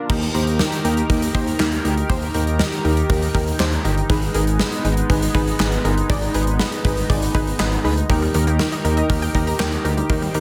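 A gated 80s drum kit sits up front in this wistful, nostalgic synth-pop excerpt, its punchy kick softly clipped and its medium-tuned snare, handclaps, hi-hat and crash ringing through a bright, airy stone room, the kit's sound polished and its cymbals bright. At 120 BPM in a straight 4/4, the music moves from Eb to Abm and back to Eb, held together by a shimmering, retro pulse-width pad that opens at 0.0 seconds with slow-attack sustained chords, thickened by chorus, a sub octave and ring modulation. A smooth gliding synth bass, warm and sawtooth-based, sustains low notes with vibrato and portamento beneath it. A warbly, dusty lo-fi pluck supplies mellow, evolving accompaniment, its detuned tone shaped by a filter sweep and chorus. At 8.1 seconds a round analog pluck joins in the background with bright, chorused arpeggios trailed by digital delay. The whole sits in a small room ambience with light reverb and a dense, heavily limited modern master.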